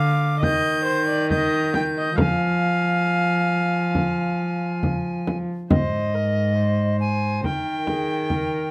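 Solemn and rustic, this excerpt from a renaissance-style consort dance moves at a straight 68 BPM in F dorian, its harmony passing from Eb to Fm and then Ab to Eb as a new section arrives at 5.7 seconds. An airy alto recorder with a wooden, vibrato-tinged tone carries the melody over a smooth-topped, gut-strung viola on the second line, while a nasal, reedy cello anchors the bass. A deep frame drum, played with soft hands and sitting close and dry, enters at 0.4 seconds, and the whole consort is captured with detailed close microphones and light reverb.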